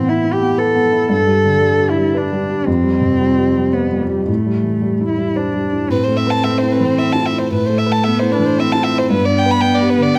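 A woody, dark cello playing sul tasto with vibrato and a soft, boxy felt-muted upright piano open this melancholic, longing neoclassical fragment in a rubato 3/4, caught up close with light reverb, before a rich violin with light vibrato and an airy, intimate sul tasto bow enters with the melody at 5.9 seconds.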